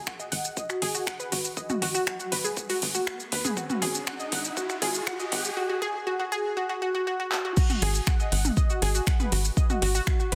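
A straight 4/4 pulse at 120 BPM drives this melodic techno passage in G# minor, cut from a longer piece and carrying a driving, cinematic mood. An up-front electronic kick anchors the groove, joined by a layered, overdriven deep house kit of metallic hats, shaker, handclaps, finger snaps, toms and crash cymbal, with sidechain pumping breathing through its percussion. A tight, nasal sequencer bass of sawtooth and square tones pumps in the low register beneath a round, detuned analog pluck that spins bright arpeggios with chorus and digital delay. The opening is a build-up with a filter sweep over a G#7(no3) chord, as a background riser sounds from 1.6 to 5.6 seconds and a drum fill arrives at 7.3 seconds. The drop lands at 7.6 seconds, set in a lush hall reverb and a dense, heavily limited modern master.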